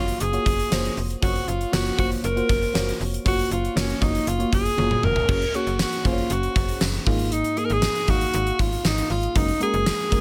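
A bright, close-miked alto saxophone with light vibrato carries the melody up front in this glossy, nostalgic 1980s-style pop excerpt at 118 BPM, over a round FM electric piano shimmering with chorus and phaser, a snappy slap-like FM bass with a metallic attack, and a punchy gated drum kit with a fat snare, bright cymbals, tambourine and toms, whose fill at 4.8 seconds leads into a new section at 5.3 seconds, all set in light studio reverb.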